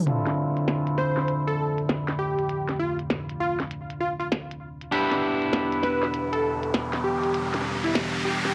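Glitch hop at 99 BPM in D dorian, this short, playful and funky cut rides a swung 16th-note feel over a Dm7 chord that shifts to Em7 at 4.9 seconds. A glitchy electronic drum kit sits up front with a tiny snare and clicky hats, both softened by low-pass filtering and carrying a tape-warm tone. An electric guitar at the edge of break-up plays picked, twangy stabs through a low-pass filter and analog delay, while underneath a deep, moody analog pad holds sustained chords with a slow attack, long release and chorus. At 1.0 seconds a punchy, catchy unison lead enters with a bright, detuned sawtooth body layered with sine and noise, its melody echoing through analog delay. Filter sweeps move across the guitar and pad throughout, and an electronic riser builds from 5.9 seconds to the end. The mix is dry and gritty, with transformer saturation and a moderate studio reverb.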